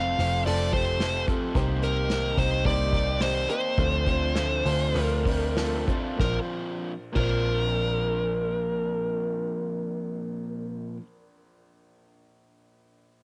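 Piano-driven pop with a hopeful feel, cut from a longer piece, where a dark, smooth overdriven lead guitar carries the melody up front over a clear, intimate grand piano with audible action noise in the background, a picked hollow-body guitar riff, a round, foam-muted picked bass, and an airy acoustic drum kit played with bundle sticks that drops out at 7.3 seconds, all captured as a cassette home recording in a small room, with the pace easing between 1.6 and 6.2 seconds before the harmony settles onto Bbadd9.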